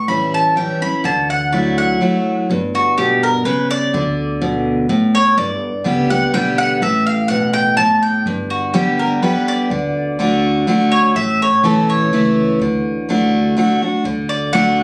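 Bluegrass in D major at 125 BPM in a lively, rustic 3/4, this short cut from a longer piece sets a bright, double-strung mandolin melody up front over bright picked steel-string acoustic guitar on fresh strings, with a thumpy, woody pizzicato upright bass sitting in the background from 0.1 seconds, all heard through a small room's moderate reverb on a compressed phone recording as the chords move from A7 and Dadd9 through G and D before resolving via A to D.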